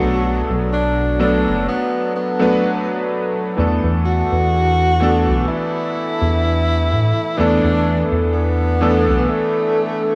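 Vaporwave with a woozy, melancholic air, this short excerpt pairs a breathy tenor saxophone melody, soft in attack with scooped notes and jazzy vibrato through tape echo, against a clear electric grand piano with a clangy low end, roughened by 12-bit sampler grit, chorus and echo, over a glossy pulse-wave synth bass with a plucky filter that drops out at 9.3 seconds, as the harmony moves from Bm7 to E7sus4 at 3.6 seconds in a small, lightly reverberant room.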